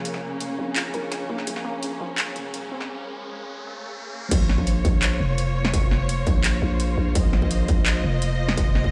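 A growling, buzzy 808-style bass sits up front through this heavy, spacious half-time drum and bass excerpt, its fast-attack notes decaying low beneath a rich, distant string section that holds sustained bowed chords with lush vibrato and a pumping sidechain feel. A warbly, dusty pluck plays nasal, lo-fi arpeggios in the background with chorus and dub echo, dropping out at 2.9 seconds as a background riser carries the build-up into a brief break. At 4.3 seconds the drop lands, bringing in a distorted electronic kick while the chords shift from B-flat minor to an added-ninth colour. The layered drum kit, present nearly throughout, offers a cracking snare, metallic hi-hats, handclaps and crash cymbal. The whole mix sounds as if played on a big sound system in a bare room, bathed in stone room reverb.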